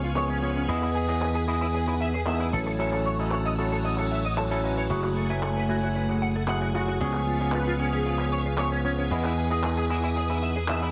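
A straight 4/4 groove at 114 BPM drives this groovy, sensual nu-disco excerpt, with a punchy, amped slap bass up front, a dry, damped 70s drum kit with handclaps and hi-hat set in the background, a twangy envelope-filtered electric guitar riff treated with ensemble chorus and tape echo, a barky, gritty overdriven tine electric piano entering at 0.2 seconds to comp through chords like C#7, Emaj7 and F#m9, lush sawtooth string-machine chords with slow attack and long release, and a thick, detuned unison lead with vibrato slipping in briefly from 6.7 seconds, all bathed in a moderate echo chamber reverb and a dense, heavily limited modern master.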